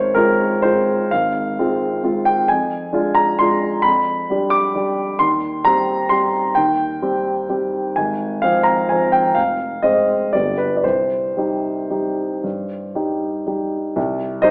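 A warm concert grand piano plays alone and up front, its deep bass anchoring a bittersweet, nostalgic classical waltz in C minor. It moves in 3/4 with a free rubato feel, drifting between 109 and 138 BPM, and ranges from F1 to D6. The harmony passes through Fm/Ab, Ddim/F and G7/F before settling on Cm/Eb, then returns via Fm and G to close on Cm at 10.9 seconds, all heard through a wet recital-hall reverb and an AM-radio tone in this fragment of a longer piece.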